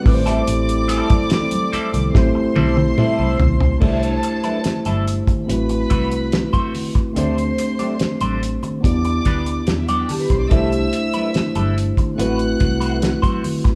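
A mellow tine electric piano, a dark, reedy string section with gut-string tone and a warm French horn section open this smooth, silky slice of lush 1970s-style soul, with the horns sustaining chords in the background until 3.8 seconds. Almost at once a cloth-damped, thuddy drum kit settles in up front with a fat snare, tight kick and dark cymbals, and it plays a fill just before the horns drop away. Beneath it a vintage foam-muted fingered electric bass sits round and amped, while quiet congas add close, dry hand percussion. An electric guitar at the edge of break-up plays a compressed, picked riff through a wah, and the distant strings carry a second line with light vibrato. From 4.2 to 10.9 seconds a very quiet vibraphone adds a metallic, ringing texture with slow motor vibrato, as the band, playing live in one room under a moderate studio reverb, moves through relaxed minor-seventh and suspended harmonies.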